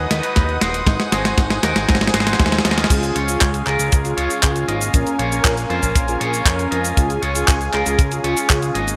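A playful, danceable italo disco passage at 118 BPM in Db major opens with a smooth, detuned analog pad holding sustained chords, bright and twangy envelope-filtered electric guitar stabs with a subtle chorus, and a fat, saturated sawtooth bass. An up-front, sampler-style 12-bit drum machine plays a fill with snare, handclaps, hi-hat, cabasa and crash, and a dry, tight acoustic kick joins at 0.4 seconds. At 2.9 seconds a mellow, round synth brass melody with chorus and digital delay enters over the shift to Db, all set in a bright 1980s-style digital production with moderate plate reverb.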